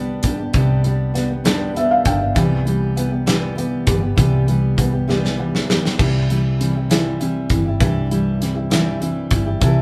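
Swaying and tender, this six-eight pop ballad in C major moves at 66 BPM, with a felt-muted upright piano, soft and intimate with audible action noise, carrying the accompaniment alongside a full-bodied fingerpicked steel-string acoustic guitar playing arpeggios and a dark, round, foam-muted vintage electric bass, while a modern studio drum kit with bright cymbals and a punchy kick enters at 0.2 seconds, the piano adding a fill at 1.5 seconds and the drums a fill at 5.1 seconds over chords moving from G to Em to C in a moderate room reverb that suggests a band playing live together in a short cut from a longer piece.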